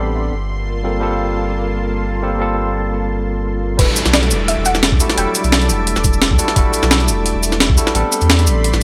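Swung 16ths at 173 BPM drive this lush, rolling liquid drum and bass passage in E minor, cut from a longer piece, with a gritty, compressed breakbeat kit, up front with a high-tuned snare, filtered hats, cabasa and crash, and a thumpy electronic kick arriving at the drop at 3.8 seconds. Throughout, a barky, clean tine electric piano with tape echo, a thick, bright detuned unison pad with chorus, phaser and sidechain pumping, and a deep, round sine sub bass carry chords moving from Gm11 to Em11 and Am11. A soft, dark pluck with chorus and tape echo sits in the background, carrying the melody after the drop beside a faint electronic downlifter, in a light reverb.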